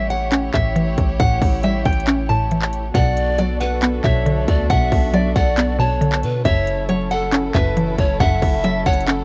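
A fingerpicked nylon-string guitar carries the melody with audible finger squeak and tape echo, over a woody, chorused synth pluck, dark sul tasto chamber strings and a deep, boomy 808-style bass, with a trap kit of hard-clipped kick, metallic hi-hats and handclaps joining up front at 0.1 seconds. This brooding trap excerpt in B minor moves at 137 BPM with a half-time feel through A7, Bm7 and F#m7 chords. At 3.0 seconds a breathy, reedy bamboo pan flute with chiff and vibrato adds a second line, all set in a dry, close cassette home recording dusted with vinyl crackle.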